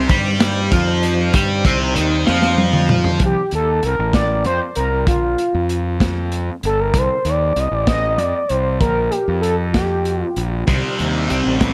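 Psychedelic rock in a slow 6/8 at 64 BPM, this trippy, mysterious excerpt sits in C dorian, moving between C minor and Bb power chords. A thick, double-tracked fuzz guitar plays a bright, distorted riff through a phaser from the start until 3.2 seconds, returning at 10.7 seconds, while a percussive tonewheel organ with key click, chorus vibrato and a slow rotary speaker holds sustained chords in the background at the same moments. A round, overdriven fingered bass stays up front throughout, joined almost at once by a crunchy breakbeat kit of hi-hat, kick, snare and toms, its dark, rolled-off small-room sound closing the opening passage with a fill from 2.3 to 3.2 seconds. At 3.2 seconds an expressive sawtooth synth lead takes the melody, mellow and sustained with ring modulation, chorus, vibrato and analog delay. Light studio reverb gives the whole an echo-heavy, hazy sheen.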